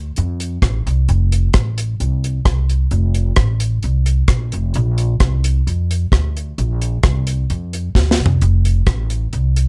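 A dry, close-up sound with little reverb frames this joyful, upbeat ska fragment in F major, moving at 131 BPM in a straight 4/4 and cut from a longer piece. A woody, dark upright bass, plucked pizzicato on steel strings, sits up front from the first moment, joined at 0.2 seconds by a deep reggae drum kit whose tight kick, medium-tuned snare, rim clicks, hi-hat and toms sound acoustic and immediate. The drums break into a fill from 7.9 to 8.4 seconds before both parts carry on to the end.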